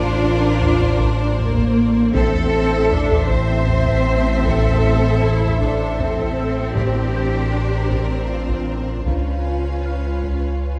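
A low, ominous bed of bowed strings opens this uneasy suspense cue at 78 BPM in 3/4. A distant violin section carries the melody over a brighter, intense second violin line, a lush viola section and a focused cello section, while a rich double bass section anchors the bass and a deep, punchy sine sub bass drones beneath, and very quiet taiko drums sound throughout. A soft, warbling organ-like pad with chorus sits in the background, a slightly out-of-tune, bell-like celesta glints at the start and returns at 6.4 seconds, and close, dry timpani strike at 6.8 seconds, all in a dark production with moderate scoring-stage reverb.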